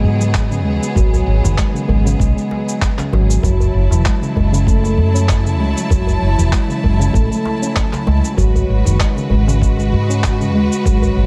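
Organic downtempo at 97 BPM with a light 16th-note swing and a meditative mood, this excerpt moves between G#m7 and F#m7 over about 11 seconds, carried by a clear, focused string section holding bowed chords with vibrato and sidechain pumping, while a ringing nitrided-steel handpan plays delayed arpeggios with sharp finger strokes. Underneath, a woody, round fretless electric bass sits prominently, dark and hollow-toned with lush chorus and the same pumping. A thumpy, gritty electronic kick, tape-warm sampled shaker and handclaps, and a tight, cracking djembe played with soft hands and kept very quiet fill out the small-room sound.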